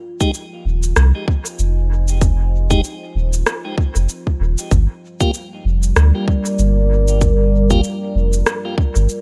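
A round, up-front dub sub bass anchors this deep, spacious ambient dub fragment, entering at 0.7 seconds and holding soft, sustained notes low in the register. It moves at 96 BPM in 4/4 with a swung sixteenth-note feel, in F dorian, as the harmony shifts from Fm7 to Gm7 at 4.7 seconds. Above and around it, a dark, detuned pad with a wave-folded, ring-modulated edge sustains moody chords from the very start, softened by chorus and its own reverb. A clean tonewheel organ with audible key click and a piping, scooped tone plays short stabs through a stopped rotary speaker, trailing dub echo until 7.8 seconds. The rhythm comes from a tight, tape-warm electronic kick placed up front, joined by electronic cabasa and rim click that also carry dub echo, both re-recorded in a small room and set within a digital ambience.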